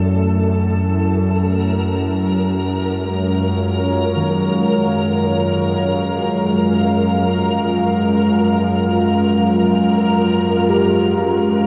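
Unfolding in free time, this unsettling, cavernous dark ambient drone excerpt, tuned to A4 = 444 Hz, rests on a deep, moody pad with a warbling chorus sheen, moving from an A5 chord to C#, over a tense, string-like bowed drone on F#2 that sits up front and carries a filter sweep. A grainy, flickering texture hovers around A4, and from 4.2 seconds metallic, bronze gamelan-type bossed gongs fade in, playing delayed arpeggios in the background. The whole piece sits in an enormous, wet reverb with a dark production.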